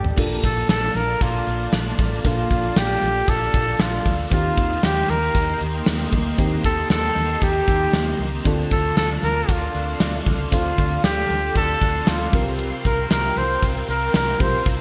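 A drum fill opens this dramatic, moody slice of 1980s-style pop at 116 BPM in a straight 4/4, and the gated kit stays up front throughout, with a punchy kick, a medium-tuned snare, bright cymbals, tambourine and toms ringing out in a big, airy gated room. A warm flugelhorn carries the melody from the start, sitting up front with light vibrato and scooped notes, while a dark, round, foam-muted electric bass holds down the low end. An FM electric piano with a soft pad layer supplies lush, dreamy accompaniment with fast-attack, decaying notes treated with chorus, and a silky string machine with phaser and ensemble chorus sustains chords in the background. From 0.2 seconds a double-tracked, high-gain distorted guitar adds a picked, bright edge far back in the mix. The harmony moves through Bbmaj7, Eb6, Dm7 and C7sus4 under a moderate lush hall reverb, giving the polished digital production a glossy sheen as the passage is cut from a longer piece.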